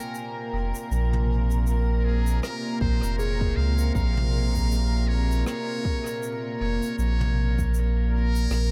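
The recording sounds echo-drenched, set in a small room with repeats trailing off the parts. It is an excerpt of meditative, deep ambient dub at 79 BPM in 4/4 with a swung sixteenth feel, resting on a Bbm9 chord in Bb minor. A round sine sub bass sits up front from 0.5 seconds, while a string section holds sustained chords with light vibrato and a reedy, gut-string tone. A trumpet with a metal mute carries the melody in a buzzy, thin, close-miked voice, its phrases thrown into dub echo. In the background, a soft FM synth bell plays mellow, decaying arpeggios through chorus, phaser, tape echo and gritty 12-bit sampler character, and an airy brush kit with rim click, shaker and toms adds its own dub echo. An electronic kick drum with a deep, tape-softened thump joins at 2.8 seconds and drops out at 7.7 seconds.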